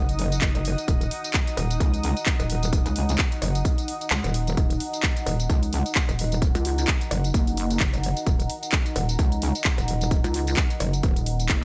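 Swung 16ths drive this swaggering, bouncy bass house clip in Eb minor at 130 BPM, where a punchy, tape-warm electronic kick sits up front (dropping out from 4.1 to 4.6 seconds) beneath a house kit of handclaps, warm hi-hats and tambourine, while an aggressive, metallic FM wobble bass with tube saturation and chorus pumps with sidechain compression, a heavy, detuned pulsing pluck wobble bass joins at 6.5 seconds, and a deep, moody sawtooth pad holds sustained chords with its own reverb in a mostly dry mix.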